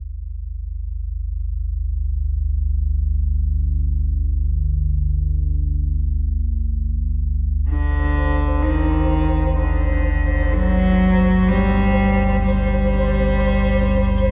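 Bathed in a wet cathedral reverb, this unsettling, dark ambient drone piece in free time opens on a deep, ominous, rumbling drone from 0.0 s. A rich, earthy, bowed cello with light vibrato and a diffuse ambient delay joins at 7.7 s, and a quieter grainy, flickering texture appears at 8.0 s, all in a brief cut from a longer work.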